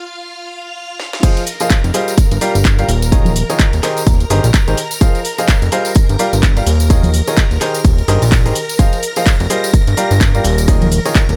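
Energetic, soulful piano house with a swung groove opens on shimmering vintage string-machine violins holding pumping chorused chords alone, until a drum fill at 1.0 s launches the drop at 1.2 s, where a brilliant, woody upright piano riff with tape echo rides over a punchy, up-front electronic kick, a cracking-snare house kit with handclaps, hi-hat, shaker and crash, close soft-handed tambourine and congas, and, from 1.8 s, a fat, saturated, detuned analog bass pumping through a Fm7, Gm7, Eb9sus4, Abmaj9/Eb cycle in a dry, high-passed mix.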